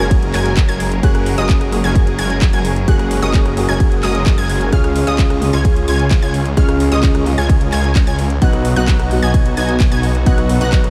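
A punchy, layered electronic kick sits up front in this anthemic, triumphant stretch of festival progressive house, running at 130 BPM in a straight 4/4 in F# major from 0.1 seconds onward. Beneath it, a thick, menacing detuned saw bass with tube saturation beats in the low end, while a house drum kit adds handclaps, metallic hi-hats, ride cymbal and rim clicks at a lower level. A bright, lush unison pluck spins high arpeggios through a diffuse ambient delay, and a supersaw stab with ensemble chorus and a filter sweep carries the riff from the background. A dark, mellow baby grand piano supplies accompaniment with its own delay, and a distant, clear symphonic string section holds bowed, vibrato-tinged sustained chords. Most parts pump with sidechain compression under a light reverb as the harmony moves from F#add9 to C# and then B, in a passage cut from a longer piece.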